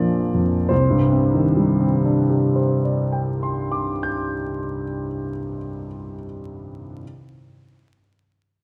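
A slow, rubato 3/4 pulse at 44 BPM gives this mysterious, hazy fragment of impressionist classical solo piano in C minor, tuned to A4 = 443 Hz, a floating, unhurried feel. The grand piano sits up front with a present tone and long sustain, spanning Bb1 to G6 as it moves from Bbadd9 to Cmadd9 at 0.7 seconds. A wet concert hall reverb and a layer of vinyl crackle surround this short cut from a longer piece, which runs to 7.0 seconds.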